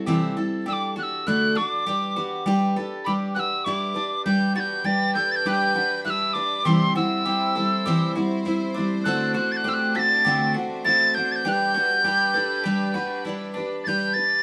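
A straight 4/4 folk pulse at 100 BPM in G major sets a pastoral, peaceful mood, as a full-bodied, picked steel-string acoustic guitar with finger squeak and bright, woody mandolin arpeggios accompany an airy, mellow tin whistle melody with vibrato, a soft attack and chiff that enters at 0.7 seconds and sits up front, before a rich, floating bowed string section joins with sustained chords at 4.3 seconds, all in a small room reverb, cut from a longer piece.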